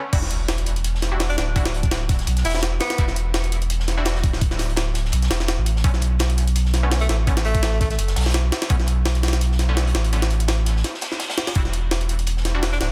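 Nostalgic and dark, this drum and bass cut sits in jungle territory with a gently swung pulse, moving from Em9 to Bm9 and back. A pitched-up, compressed jungle sampler-style kit leads up front with a thumpy kick, high-tuned snare, crash and hats, gritty and re-recorded in a large room, while a second, crunchy breakbeat kit of saturated hi-hat and snare sits in the background with a rolled-off top. Underneath, a thick, deep saturated sub bass with a triangle shape holds the low end up front. A band-passed chord stab, nasal and detuned with sawtooth bite, flickers in the background through chorus and dub echo. A bright, close-miked tenor saxophone plays pop-style phrases with vibrato and scooped notes, first at 1.3 s and again at 7.0 s, its lines trailing dub echo. A sub drop opens the drop at 0.2 s, and a reverse cymbal at 11.0 s marks a brief break before the chords return to Em9, all within a small room ambience and a dense, heavily limited master.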